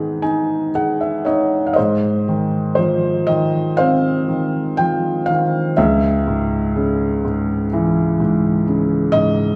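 A felt-muted upright piano opens alone with a brief fill, its soft, mellow, intimate tone sitting up front as a short excerpt of a lyrical, melancholic classical solo piece in Ab major, played rubato at roughly 57-64 BPM in 4/4 and tuned to A4 = 444 Hz. At 1.8 seconds the music moves from a G#m colour into a wistful new passage on Ab6, darkening to Dbm at 5.8 seconds as the vintage, thin-felt piano ranges from Db2 to G#5. A wet recital-hall reverb, like a church or concert hall, lets each note linger for about 1.6 seconds.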